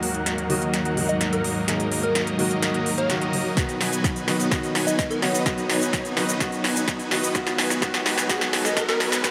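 Festival progressive house at 127 BPM in Eb minor, this euphoric, emotional build-up opens with a dark, mellow baby grand piano, lush bowed symphonic strings with vibrato, and a huge, bright detuned supersaw riff, all pumping with sidechain while filter sweeps move across the strings and supersaw and an overdriven big-room drum kit with crisp hats, shaker and punchy snare plays a fill up front. A catchy, plucky square-wave lead sits in the background from 1.1 s, a punchy layered electronic kick enters at 3.6 s as the chords move from Ebm to B and on to Abm7, and a very quiet riser arrives at 6.0 s. A huge ambient reverb with a long 7.5-second tail surrounds the mix of this short excerpt.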